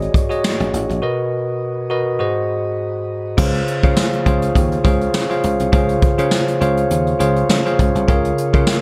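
A clean, bell-like tine electric piano sits up front with a shimmer reverb, providing the accompaniment in this glossy, nostalgic slice of 1980s-style pop in Db major at 102 BPM with a light 16th-note swing, cut from a longer piece. Beneath it, a dry thumbed slap bass sounds bright and foam-muted, stopping at 8.6 seconds. A brushed jazz kit with dark cymbals, a punchy kick, snare, hi-hat, crash and tambourine carries gated reverb in a roomy, distant studio space, with a break from 1.0 to 3.4 seconds before the harmony settles onto Dbmaj7.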